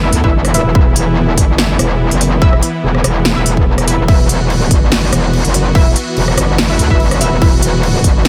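This fragment of heavy wobble dubstep opens with a metallic, distorted wobble bass, a bold orchestra-hit-like synth stab and a lush supersaw pad sounding together, setting a menacing, aggressive mood. The bass sits up front in the low register, its FM and sine tones compressed and thickened with chorus and overdrive. Behind it, the pad holds detuned sawtooth chords with a soft attack and sidechain pumping. The stab adds punchy, decaying hits higher up, carrying a noise layer, filter pluck, built-in reverb and tape echo. A big-room dance drum kit comes in at 0.1 seconds with a punchy snare, crisp hats, rim click and crash cymbal, and an electronic kick joins up front at 0.2 seconds; both drum parts have a tape-tinged sound from being re-recorded in a large room. The groove runs in half-time with a light swing on the sixteenths inside a digital ambience, and the stab drops out at 7.5 seconds while the other parts carry on.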